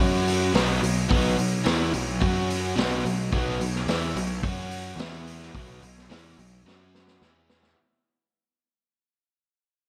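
A biting, double-tracked overdriven guitar with slapback echo drives a swaggering, gritty blues rock and southern rock riff at 108 BPM over F#5, B5 and E5 power chords, alongside a punchy fuzz-laden picked electric bass and joined moments later by a vintage drum kit with a high-tuned snare and rolled-off top, all set in a lush hall reverb for a big arena sound as the short excerpt fades out and the drums play a fill at 6.7 seconds.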